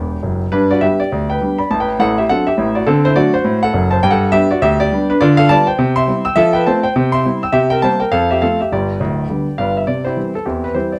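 Playful and swinging, this short stride piano passage cut from a longer jazz piece moves at a brisk clip with a swung lilt on the eighth notes. A lone grand piano carries everything from start to finish, its tone clear and polished, sitting up front and intimate with the clatter of its action audible beneath the notes. It opens with a quick fill in the first half second before settling into the stride figures, reaching from deep in the bass up into the bright upper register. The harmony turns from G major toward a new tonal center of C major around 5.2 seconds, cycling through brief changes before moving into a new section near 9.9 seconds. A moderate studio reverb gives the instrument a little air, while the overall production leans dark and mellow.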